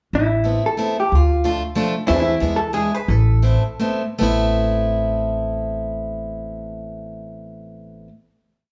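A dark, clean, compressed hollow-body jazz guitar carries a motif-based melody in period phrases until 3.8 s in this whirling and bittersweet musette waltz in A minor at a swung, rubato 147-187 BPM, over a boxy picked acoustic archtop playing close-voiced backbeat chords and a woody, growly pizzicato upright bass on root and fifth, the band heard live in one room with moderate studio reverb, slowing from 2.1 s into a final chord at 4.2 s that the archtop and bass hold until 8.1 s.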